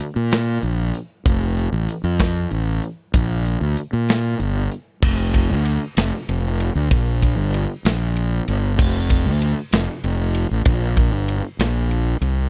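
A fuzz-drenched fingered electric bass anchors this short indie rock excerpt, its dark, round, overdriven tone sitting up front from 0.2 seconds to the end at 12.5 seconds. Beside it, a big rock drum kit with a punchy kick, a medium-tuned snare and bright cymbals fills the groove with hi-hat, ride and crash, its acoustic sound carrying the air of a big room. The lilting 6/8 metre gives the music a carefree yet wistful mood, unhurried and relaxed. A first section gives way to a second at 5.0 seconds, and the drums drop out at 12.4 seconds as the bass carries on to the close. The recording itself is dry and close, with little reverb, in the manner of a 1970s studio session.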